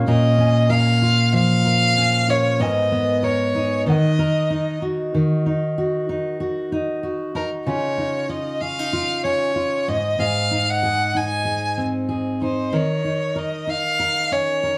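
A gently swung sixteenth-note pulse in 4/4 carries this tender, wistful acoustic pop passage, cut from a longer piece. A fingerpicked steel-string jumbo guitar with fresh strings sits up front, bright and full-bodied, laying down the accompaniment throughout. Beneath it, a very quiet upright piano adds dark, woody chords with long sustain, dropping out at 5.1 seconds. Over both, a single bowed violin sings the melody close and up front, its tone nasal yet smooth, with even phrasing and vibrato. The players sound together in one room, wrapped in moderate studio reverb, and the harmony drifts from minor chords toward brighter, open shapes near the close.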